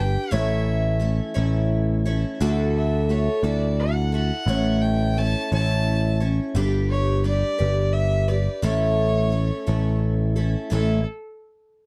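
A jangly folk-rock and heartland-rock excerpt in 6/8 opens with a picked twelve-string acoustic guitar, its shimmering, octave-doubled strings up front with audible finger squeak, a direct, amped electric bass, and a distant, earthy bowed fiddle carrying the melody with light vibrato and a biting edge. The warm, unhurried progression moves from A to Dadd9, back to A, then G and A, before a new section arrives at 10.7 seconds. The sound is dry and close, like a 1970s studio recording.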